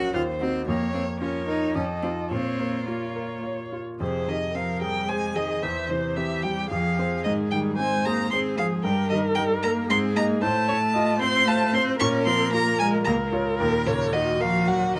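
Closely miked and nearly dry, this excerpt from a quick classical-period piano quartet movement in three-time sounds dramatic and urgent, its pulse pushed and pulled with rubato. A rich, smooth violin with even vibrato carries the melody up front, while an intense cello with an airy bow sings a second line and a clear, intimate baby grand piano, its action noise audible, accompanies alongside a soft-edged, expressive viola that slides with portamento from 0.1 s. At 4.0 s the music moves into a new section in F minor and passes through shifting harmonies.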